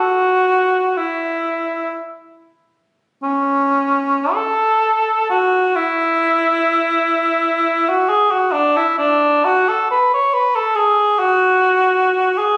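Flexible rubato in 3/4 drifts between 43 and 71 BPM, so the pulse breathes freely in this short classical fragment cut from a longer piece. A lone cor anglais carries everything, sitting up front with a mellow tone and light vibrato as it moves between C#4 and C#5 in an expressive, serene and nostalgic manner. The opening phrase gives way to a new passage at 3.2 seconds, which continues until the recording breaks off at 12.6 seconds. The instrument sits in a moderate recital-hall ambience with a 1.4-second decay, overlaid with club reverb and compression. Captured on a phone in the room, the sound carries a candid, intimate quality that suits the reflective mood.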